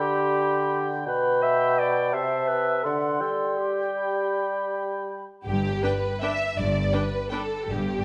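A clear clarinet opens this elegant, festive orchestral ballroom waltz in flowing rubato, joined from the start by a hollow, airy flute, a distant, roomy oboe and an up-front bassoon supplying the low accompaniment. At 5.5 s the woodwinds give way to lush bowed strings: an expressive, soft-attacked violin section up front and cellos and double basses holding the bass, with a focused viola section accompanying and a smooth-topped violin melody tucked in the background from 5.8 s. A wet recital-hall reverb gives the ensemble space in this brief cut from a longer piece.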